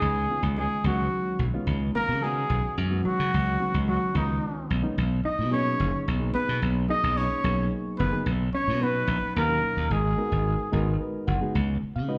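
Punchy, amped slap bass sits up front from the first moment of this driving, nocturnal jazz excerpt in 6/8. Alongside it, a close-miked, breathy trumpet sings a mellow melody with vibrato and scooped notes, while a dark, compressed hollow-body guitar traces a second line in the background. A reedy, clean electric piano heard through its built-in speakers accompanies throughout and adds a short fill at 10.7 seconds, and the whole band plays live in one big, wet-sounding studio room as the chords move from C#9sus4 through G#m7, Bmaj9 and G#m9 before returning to C#9sus4.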